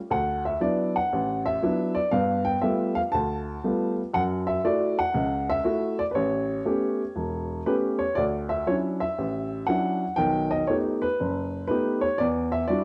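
A lone upright piano opens this relaxed, playful solo jazz excerpt, swinging at 119 BPM in D major and ranging from deep bass notes to the upper middle register. Its woody, intimate tone sits up front with audible action noise, moving through rich chords such as D69, G9 and A9 before shifting to Dmaj9, B7b13 and Em9 from 8.2 seconds. A moderate spring reverb adds a natural glow, while the home cassette recording leaves the top end soft and rounded.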